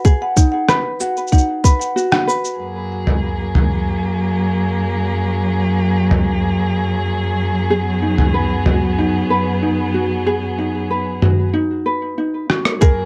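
This playful, pastoral folktronica piece at 94 BPM opens on mellow fingerpicked ukulele arpeggios with delay and plate reverb, a tight electronic kick, and a muffled, pitched-down sampler-style kit of rim click, shaker and toms, while a woody marimba adds a brief second line with 12-bit grit. At 2.6 seconds a rich string quartet enters with bowed, sustained chords full of vibrato and portamento, moving from G#m to F#add9, and the ukulele returns at 7.7 seconds over G#m/F#. A drum fill closes the passage in a dark, softly reverberant mix, as it cuts from a longer piece.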